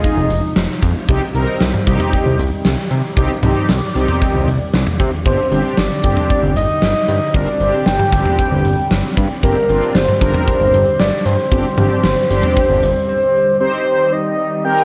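The sound is worn and warbling, like an old cassette with its pitch drifting, set in a moderate plate reverb and a small room ambience. This melancholic yet driving synth-pop excerpt in C minor moves at 115 BPM in a straight 4/4. A huge arena drum kit sits up front with a punchy kick, a medium-tuned snare, hi-hat and toms in a pumping hall sound, while a fat, thick analog bass built from detuned sawtooth and triangle waves carries the low end with a filter sweep. Mellow synth brass, round and brassy with chorus, holds the accompaniment as a swirling, evolving phased pad stays in the background over chords moving from Fm7 to Cm, then Gsus4 and back to Cm. A soft octave-layered synth lead with a sub-octave, vibrato, chorus and slapback echo sounds for a moment at the start and returns at 5.3 seconds to carry the melody up front. The drums and bass stop at 12.9 seconds, leaving the lead, brass and pad to close the cut.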